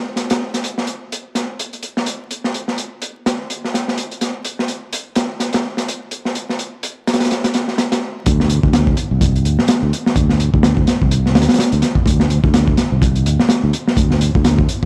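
Breakbeat with a swaggering, funky strut at 126 BPM, swung on the sixteenths, this excerpt opens on a crunchy, saturated drum kit of kick, snare and hi-hat, its punchy kick and medium-tuned snare sitting up front with a dark, rolled-off top. At 8.3 seconds the drop arrives as a fingered electric bass joins, playing warm, direct and amped between C2 and D2 through to 14.9 seconds. The sound is dry and gritty, like a hardware recording dusted with vinyl crackle.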